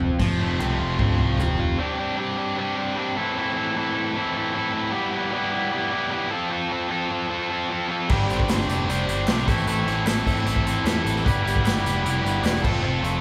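A straight 152 BPM indie rock pulse in 4/4 drives this jangly, carefree excerpt, where an up-front sludgy distorted guitar riffs throughout while a bright overdriven guitar in the background, a round, punchy overdriven picked bass, a distant, roomy acoustic drum kit played with bundle sticks (dark cymbals, punchy kick, medium-tuned snare, toms) and a very quiet, hollow group handclap drop out after an opening drum fill and return at 8.1 seconds, the handclap following at 8.5 seconds, all in a live-sounding large studio room moving through F, Gsus4, Am and Em chords.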